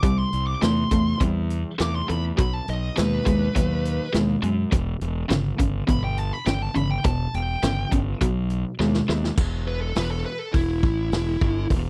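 A brooding, smoky stretch of blues rock and southern rock opens with a dark, distorted, picked lead guitar melody over a bright, scooped, double-tracked riff guitar, a growly fuzz bass played with the fingers and an up-front vintage kit with a punchy kick and a rolled-off top, all captured dry and close in 1970s studio fashion, until a drum fill at 8.8 s, the riff guitar's exit at 9.3 s and the lead guitar's solo from 9.4 s.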